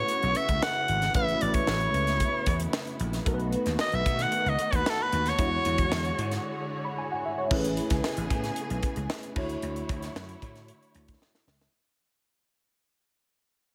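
A raspy, edgy soprano saxophone with scooped notes leads this glossy, urban 1980s jazz-funk pop excerpt in A major at 113 BPM over a worn, lightly overdriven tine electric piano with analog chorus and lush bowed strings, soon joined by a crisp, airy fusion drum kit with a high-tuned snare and a growly vintage slap bass, moving through A69, B7 and E13 until the sax stops at 6.3 seconds, then after a short break gliding through Amaj9 and Dmaj9 in a fade-out from 7.5 seconds, closed by a drum fill at 11.2 seconds, all in light studio reverb.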